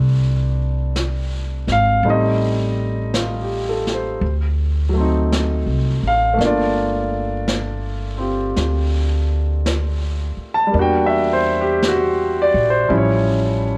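The recording sounds like a worn, warbling old cassette tape, with a warbly pitch drift and a light reverb around it. It's a slow, intimate and smoky jazz ballad at 55 BPM in 4/4, with swung eighth notes, taken from a longer piece. A grand piano sits up front and carries the accompaniment, its long sustain and audible action noise making it feel close and natural. Beside it, a pizzicato upright bass on steel strings gives a woody, thumpy low end, also placed near the front. A brush kit enters at 1.0 s, softly playing brushed snare and hi-hat on a medium-tuned snare in a natural studio room, sitting well behind the other two. The harmony moves from F6/9 through Am7b5, D7b9 and a long Gm9, then turns to Em7b5 at 10.7 s and A7b13 at 12.9 s.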